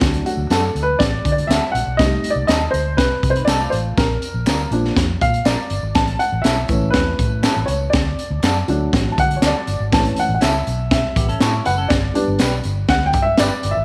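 This is an uptempo, 1960s-style soul piece at 121 BPM in a straight 4/4 and D major, with an uplifting, danceable mood, cut from a longer piece. A worn, woody and slightly detuned upright piano sits up front and takes the featured solo for the whole passage, over chords that move from D through Am9b5, Bb and A before coming back to D, A and G. Beneath it, a dark, foam-muted fingered electric bass gives a round, punchy low end. A raw garage drum kit sounds close and mid-forward, with a high-tuned snare, a boomy kick, and a gritty, saturated tone with a rolled-off top. A tube shaker and group handclaps sound distant, as if in a large room, well in the background, while an electric guitar through a small old amp adds lo-fi, slightly broken-up, compressed stabs from 0.5 s, bathed in spring reverb and tape echo, and a clean, picked semi-hollow guitar plays a short riff at 3.4 s and again at 11.2 s. 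The recording has light reverb and a small room ambience.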